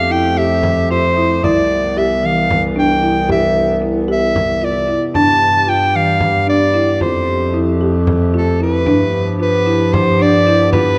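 A mellow, up-front soprano saxophone with vibrato carries the melody in this restless, hopeful chamber piece in 7/8 at 226 BPM in C major, over a warbling, nostalgic tape-like pad with chorus, woody soft-mallet marimba arpeggios, a dark bass clarinet line and a small, bright frame drum entering in the background at 0.6 seconds, all set in a moderate concert hall reverb as chords move from Fmaj9 through Cmaj7 and G7 in this excerpt from a longer work.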